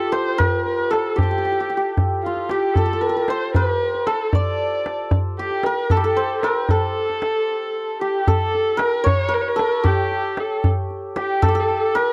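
A straight 6/8 pulse at 76 BPM, counted in dotted quarters, carries this stately, festive Persian modal ensemble fragment, in which a shimmering, ringing hammered santur leads the melody between F4 and D5, a single bowed kamancheh with expressive vibrato and portamento adds a second line in the same range, and a tight, hard-handed tombak joins at 0.1 s, all three placed up front in a dry, close 1970s-style studio sound until a break at 7.5 s gives way to a new section from 8.3 s.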